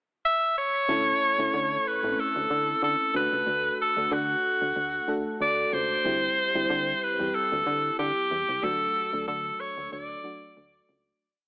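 This 1980s-style pop piece in D major moves at 93 BPM with a lightly swung 16th-note feel and a romantic, uplifting mood. A bright alto saxophone enters on a pickup at 0.3 s and then carries a forceful, vintage-flavored melody built from song-like motifs, its vibrato sitting up front as the solo voice. From 0.9 s a mellow FM electric piano plays syncopated chords in close voicing, soft and full-bodied with grace notes, a faint noise layer and chorus. Beneath it, a punchy, round FM bass drives a dark, syncopated pop-funk line. The harmony moves from A/D to D, then to C/D and back to D. The piece sits in a lush hall reverb with an AM radio sound, and it fades out from 8.6 s to the close.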